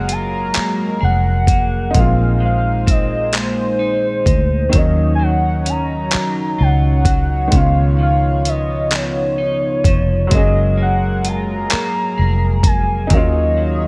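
Dry, with little reverb, this late-night, yearning slice of slow R&B sits in a relaxed 6/8 at 43 BPM in E-flat dorian, cut from a longer piece. A velvety synth lead carries the melody high above, smooth and sustained with chorus and vibrato, while a clean, dark, picked electric guitar weaves a second line through lush chorus. A bright, brilliant baby grand piano supplies the accompaniment, and a shimmering, retro pulse-width pad holds evolving sustained chords with a soft attack and long release. Underneath, a vintage foam-muted fingered bass sounds round and punchy, up front alongside a gritty, overdriven sampler-style drum kit of thumpy kick, hi-hat and handclaps that plays from 0.1 to 13.3 seconds. The harmony drifts through lush extended chords, moving from Gbmaj9 through Bb9sus4, Ebm9 and Db9, then returning to Gbmaj9 before settling on Ebm9.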